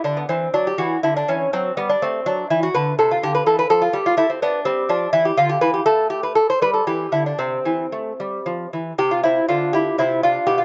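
Serene and flowing, this short classical passage is a baroque-style dance for solo lute in 6/8 and C major, moving at a gently rubato pace of about 74-85 BPM counted in dotted quarters. The lute carries everything alone, fingerpicked on gut strings with doubled courses, some of them in octaves, giving a delicate, warm voice that sits up front and ranges from B2 to C5. Its harmony wanders through colourful chords such as Dmaj9, Cmaj13 and Fmaj9 before settling toward G and a closing C. A brief moment free of chords at 5.9 seconds breaks the harmonic flow, and at 9.0 seconds a new section begins just before the cut at 10.6 seconds. A moderate spring reverb adds a soft halo, and the sound is mellow, with its top end rolled off, as befits a fragment lifted from a longer piece.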